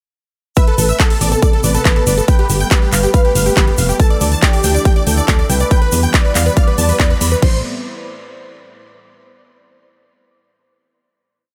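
A dry mix carries this bittersweet, emotional uplifting trance piece at 140 BPM in A minor, where a huge, euphoric supersaw lead with delay and sidechain pumping spins a sixteenth-note riff over a pedal note, joined by a velvety, vibrato-tinged synth lead with dub echo, a lush, warbling pad in the background, a round FM bass on the off-beats, a punchy four-on-the-floor kick, metallic hats with claps and crash, and a grainy egg shaker, all moving through Amadd9, Gadd9, Dsus2 and Em in a drop from 0.6 s to 7.4 s before settling on a final Amadd9 chord.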